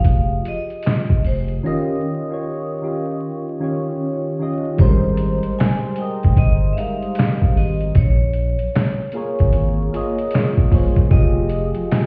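Muffled as if heard through a wall, with vinyl crackle and a stone-room reverb, this nostalgic, melancholic lo-fi hip hop excerpt swings over a gritty, pitched-down sampler-style drum kit of thumpy kick, medium-tuned snare, hi-hat and handclaps, a deep, round dub sub bass that stops at 11.7 seconds, mellow electric-piano-like synth keys coloured by chorus, phaser and cassette tape, and a bright, ringing vibraphone melody played with hard mallets through analog delay and plate reverb, moving from Fm7 through Eb7, Abmaj7 and Bbm7 to Fm9 with a break from 1.6 to 4.8 seconds.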